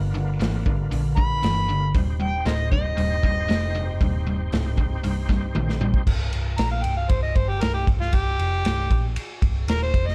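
An amplified, overdriven harmonica carries the melody in this heavy, gritty fragment of blues rock and southern rock. It enters at 1.2 seconds with light vibrato, scooped notes and tongue slaps in a jazz-style phrasing. Beneath it, a biting, double-tracked guitar riff and a thick tonewheel organ fill out the opening, the organ holding sustained chords through a slow rotary speaker with chorus vibrato and key click as the harmony moves from G7#9 to Cm. A vintage drum kit sits up front with a punchy kick, medium-tuned snare and dark cymbals, while a round, foam-muted picked bass anchors the low end in a straight four-four feel. During a drum fill, the guitar and organ stop at 6.0 seconds, and from 6.1 seconds the harmonica takes a solo over bass and drums on a C5 chord, with the drums' rolled-off top and a small room ambience giving the sound a close, aged character.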